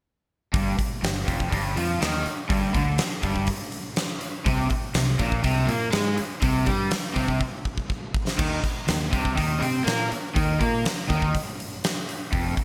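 A straight 4/4 pulse at 122 BPM drives this aggressive hard rock excerpt in G minor, tuned to A4 = 435 Hz, where a double-tracked, overdriven semi-hollow guitar riff sits up front over a growly, punchy fingered electric bass and a huge arena drum kit with a fat snare, bright cymbals and gated reverb, all three running from 0.5 to 12.6 seconds through power chords on G, C and Eb, with a drum fill from 7.4 to 8.4 seconds, all framed by light small-room ambience and bright 1980s-style digital production.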